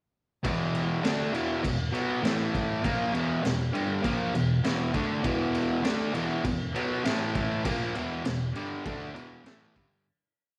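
A fuzz guitar, bright, double-tracked and up front, opens this swaggering, menacing garage rock piece with a distorted power-chord riff, together with a raw, gritty small-room drum kit with a punchy kick, high-tuned snare and crash cymbal driving a big rock groove under light studio reverb, before a fade-out begins at 7.7 seconds.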